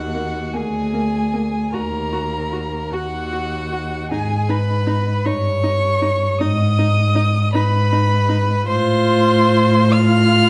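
A warm, focused first violin carries the elegiac melody above a clear second violin and a smooth, even cello bass that sits up front in this solemn, slow romantic string quartet movement in Eb minor, with a rich viola joining at 0.1 s as the 6/8 pulse at 52 BPM bends with rubato through a wet recital-hall reverb, all cut from a longer piece.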